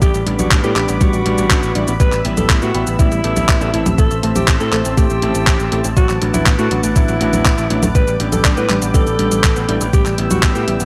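A straight 4/4 groove at 121 BPM drives this melodramatic, bittersweet italo disco excerpt, built on a thumpy, overdriven electronic kick and an up-front, sampler-style 12-bit drum machine of cabasa, congas, handclaps and hi-hat dressed in gated reverb, both sharing a studio ambience. A bright, growly picked electric bass sits directly beneath, while a raspy alto saxophone carries the melody with vibrato, a smooth top and digital delay. Behind it, a thick, full-bodied detuned pad of sawtooth and square waves holds slow-attack chords through chorus, and a punchy, wave-folded unison pluck weaves warbling arpeggios with a filter sweep and tape echo in the background. A clean, fingered semi-hollow electric guitar adds hollow-body stabs from 0.3 s, roughened with vintage 12-bit sampler grit. The harmony moves from G/A through Em/A, Am and Bm7/A over an A bass, and the mix stays dry.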